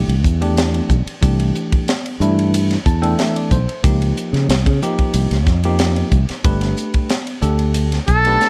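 Up front, a buzzy, brilliant trumpet in a metal mute arrives only at 8.1 s, sounding a single scooped A4 with light vibrato in close-miked jazz style, joined by a distant, pure silver concert flute on A5 as a second line. This short excerpt of electric jazz fusion moves at 92 BPM in a straight 4/4 in C major, with a funky, bright mood. Before the horns appear, a bell-like, clean tine electric piano carries the accompaniment from the start, adding a fill between 2.5 and 3.8 s. Beneath it, a punchy, up-front fretless electric bass sounds direct and amped, while a tight funk drum kit with a high-tuned snare, hi-hat, ride cymbal and a punchy kick sits mid-forward in a small room. The chords move from Cadd9 to Dbmaj9 at 3.8 s and Gadd9 at 6.5 s. Light reverb frames a dark production.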